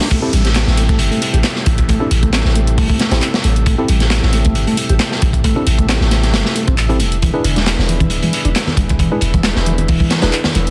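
A deep, boomy 808-style bass with tube saturation anchors this funky, raw breakbeat excerpt at 135 BPM in A minor, over a gritty, crunchy breakbeat kit with a tight kick and a tape-toned analog drum machine adding handclaps and hi-hat. A smooth tonewheel organ holds sustained chords through a slow rotary speaker with sidechain pumping, while a soft, flute-like second organ plays a riff with key click and tape echo in the background. A worn, slightly out-of-tune tine electric piano fires overdriven stabs, and a very quiet riser and downlifter sound until 3.7 s. The Am7 harmony shifts to E7 at 7.2 s, and bright congas join at 7.6 s, all under vinyl crackle and a dense, heavily limited master.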